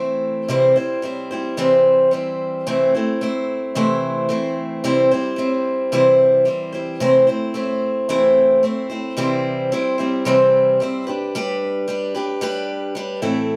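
A moderate echo-chamber reverb surrounds this short, hopeful rock cut from a longer piece at 110 BPM in C major, where a lone picked steel-string acoustic guitar sits up front with a warm, boxy concert tone, rocking between C and Am/C before shifting to a new section at 9.2 seconds that moves from C to G at 11.1 seconds.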